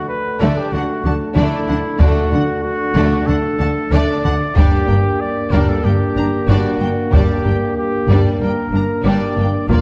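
A dark, warm production bathes this cut from a longer cinematic score in the deep reverb of a scoring stage, with some lossy compression artefacts audible. The mood is dark and epic, moving at 94 BPM in a straight 4/4 as the harmony shifts from D to G minor. From the start, a distant French horn section holds soft-attacked sustained chords while a solo trumpet in classical style punches out stabs above it. At 0.4 seconds the strings arrive: a lush violin section carries an expressive, vibrato-laden melody from afar, a focused second violin line and close violas fill in the middle in the background, and cellos join a rich, even double bass section on the low end. At 2.0 seconds a taiko ensemble enters with heavy sticks and a live-room thunder, the loudest part of the texture, adding to the piece's epic scale.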